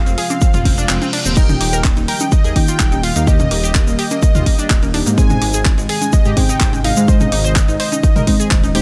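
Progressive house at 126 BPM with a bittersweet, emotional mood, this excerpt moves from Fm to Eb and then Ab. A round, octave-layered synth lead carries the melody over a smooth supersaw second line, an airy, breathy pad with chorus and phaser, a detuned analog pluck playing arpeggios with tape echo, and a deep, rumbling saw bass. All five pump to the sidechain. A punchy, up-front electronic kick anchors a house drum kit of crash, handclaps and hi-hat, a grainy egg shaker, and tape-warm electronic congas, woodblock and toms; the kick drops out from 0.9 to 1.4 s as a reverse cymbal rises in the background, and a dark, wave-folded chord stab enters at 1.4 s, all in a dry mix.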